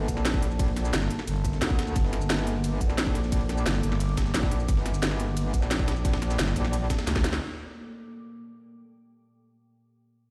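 A deep, moody sawtooth pad with chorus and long release opens this tense, dark technical drum and bass excerpt in G minor at 176 BPM together with a metallic, saturated wobble bass with sidechain pumping up front, while a tight electronic kick, a drum and bass kit with cracking snare and crisp hats, and a very quiet, gritty breakbeat sampler-style kit drive the drop; a thick, growling FM bass cuts in at intervals from 0.9 s, a drum fill at 7.1 s ends the drums, and the pad sustains alone until 10.3 s in a stony room reverb.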